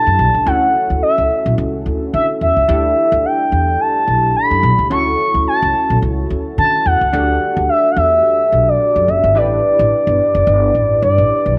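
A small-room home recording on cassette, with moderate spring reverb, frames this smooth, danceable early-eighties boogie funk at 108 BPM, swung on the sixteenths and moving between Dmaj9 and Em11/D. An expressive sawtooth portamento lead with a tape-tinged chorus carries the melody, its soft attack, vibrato and moving notch giving it a gliding, warm and dark voice, while a punchy, detuned polysynth comps underneath with a fast attack, sub octave, filter sweep and chorus. A woody, dark pizzicato upright bass on steel strings sits up front from 0.1 s to 11.6 s.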